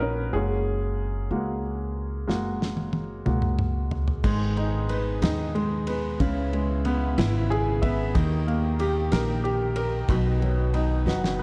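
Soaked in a dreamy, lush hall reverb, this aching, dramatic six-eight pop ballad in G# minor moves at 62 BPM, with a clear, up-front baby grand piano and a woody, thumpy pizzicato upright bass from the start, a damped 70s drum kit with dark cymbals and a fat snare entering on a fill at 2.3 seconds, and a full-bodied picked steel-string acoustic guitar adding arpeggios through an analog delay from 4.2 seconds as the chords pass from G#m through C#m7, where the piano plays a brief fill leading into D#, and on to B, before the drums fill once more as the excerpt is cut off.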